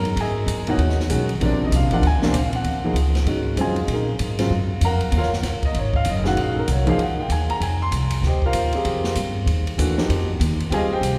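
A long, wet church reverb of about 3.0 seconds surrounds this brief modal jazz passage, cut from a longer piece and set in E-flat Dorian at a brisk 194 BPM in 4/4 with a swung eighth-note feel. The mood is cool yet intense. Up front, an intimate concert grand piano supplies the accompaniment, its deep bass, long sustain and audible action noise giving the chords a close, physical presence. Alongside it, a woody, thumpy pizzicato upright bass on gut strings anchors the low end. An acoustic drum kit sits further back, with dark ride and hi-hat cymbals, a medium-tuned snare and a boomy kick. The harmony moves from Dbm11 to Bb7, then settles on Ebm11 at 2.7 seconds before shifting to Fm11 at 7.6 seconds.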